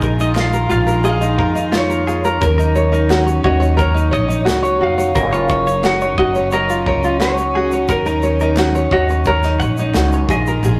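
A rough rehearsal-room recording with a faint mains hum and moderate reverb frames this wistful, tender acoustic pop passage, cut from a longer piece, as bright fingerpicked tenor ukulele and a woody, growly pizzicato upright bass sit up front over a small-room drum kit of tight kick, medium-tuned snare and shaker. A dark, slightly broken-up electric slide guitar carries the melody, while a twangy, scooped clean electric guitar recorded direct plays picked arpeggios from 0.2 to 9.9 seconds. Soft-attack bowed strings float sul tasto in the background and very quiet crisp group handclaps add texture as the chords move from Bb7sus4 through Ebm7 and Gbmaj7.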